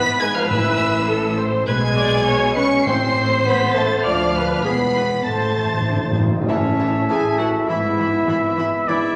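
This restless, urgent excerpt from a quick classical-period movement for symphony orchestra opens in A minor at 101 BPM in 2/4, with a rich, focused violin section carrying the melody over a clear, intense second violin line, dark expressive violas, a soft-attack double bass section with portamento, a cello section, and distant, roomy French horns holding sustained chords. A timpani in the background enters at 0.5 s with medium mallets and plays a fill just before the second section begins at 6.5 s, where an up-front oboe, a smooth clarinet and an airy silver flute add second lines. The whole sits in a wet scoring-stage reverb with a layer of vinyl crackle.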